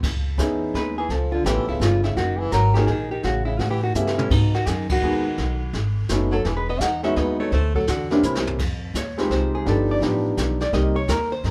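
Woody, pizzicato upright bass and a brushed jazz kit with dark cymbals and a boomy kick open this moody, late-night small-group swing and bop excerpt in 3/4 at 168 BPM in C# minor, soon joined by an intimate concert grand piano with audible action noise in accompaniment, a dark, clean hollow-body electric guitar carrying the melody from 0.8 s, and a breathy, subtoned tenor saxophone second line with vibrato and scooped notes that stops at 8.5 s, before the guitar takes a solo from 8.6 s, the band sounding live together in one room with light reverb.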